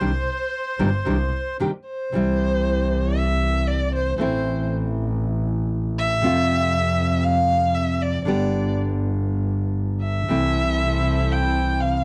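In a rubato 4/4 at 117 BPM, this passionate, tense tango excerpt in C major opens with a reedy, dark bandoneon melody that stops at 1.6 s; after a brief break, a bowed violin with vibrato, portamento and slapback echo, heard as a second line from the start, takes an expressive solo from 2.1 s over full-bodied fingerpicked nylon-string guitar and a rich, smooth, up-front bowed double bass, while a distant chamber string section with gut-string tone adds soft background stabs from 10.3 s, in a dry, close 1970s-style studio sound with light reverb.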